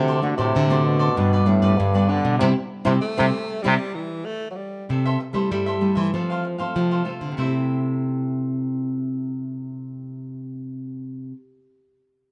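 A punchy, jazz-style trombone solo with vibrato leads this playful, sunny samba fragment until 3.7 seconds, when a breathy tenor saxophone with scooped notes has already slipped in at 3.0 seconds for a short second line over a band accent, while a crisp picked cavaquinho, a fingerpicked classical nylon-string guitar up front and a second nylon-string guitar playing the bass with audible finger squeak carry on through a roomy large-studio reverb.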